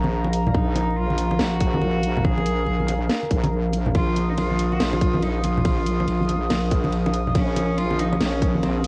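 A half-time groove at 141 BPM in 4/4 swings its sixteenths, with a garage drum kit entering at 0.3 s, its cracking snare, hi-hat and ride set in a small room, and a tight, tape-softened electronic kick arriving at 0.5 s. This deep dubstep fragment in Bb minor, cut from a longer piece, feels meditative and brooding, its harmony resting on Bb5. Up front, a heavy wobble bass on a low Bb wobbles with a saturated, detuned square-and-sine tone thickened by chorus. Behind it, a dark analog pad holds slow-blooming sawtooth chords with a sub octave, given a cassette-tape haze. Soft-handed congas add bright acoustic colour in the background, while a single bowed cello, played sul tasto, floats a pure, distant melody through dub echo. Light digital reverb and vinyl crackle lend the whole recording a homemade, lo-fi character.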